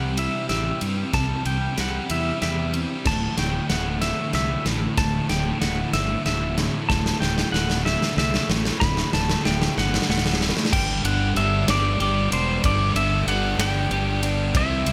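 A roomy, hopeful and cinematic post-rock passage cut from a longer piece, moving at 63 BPM in 6/8, where a twangy, compressed lap steel with slide, volume swells and tape echo carries the melody over bright clean electric guitar arpeggios also trailed by tape echo, a cranked stack guitar riff in the background, and a round, dark fuzz bass. A big-room acoustic drum kit with punchy kick and medium-tuned snare sits up front, entering at 0.2 seconds and playing a fill across the build-up, while a faint, morphing wavetable pad with phaser hovers beneath. A very quiet overdriven semi-hollow guitar joins at 3.1 seconds as the chords move from Cadd9 to Dadd9, and the music arrives on Gadd9 at 10.7 seconds.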